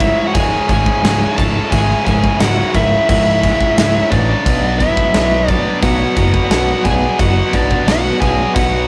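A dark, high-gain lead guitar carries the melody over a second distorted lead line tucked into the background, giving this relentless, epic heavy metal excerpt its straight 4/4 drive. Beneath it, a heavy, bright riff guitar and a very quiet, tight distorted guitar play riffs in the low register, while a growling, overdriven picked bass anchors the bottom and a big, punchy acoustic drum kit with crash cymbal and a medium-tuned snare sits up front, the drums stopping at 8.7 seconds. A very quiet bowed string section adds smooth, expressive sustained chords with vibrato and portamento as the harmony moves from C#m to Bm, all captured in a rough rehearsal-room sound with light reverb and saturation.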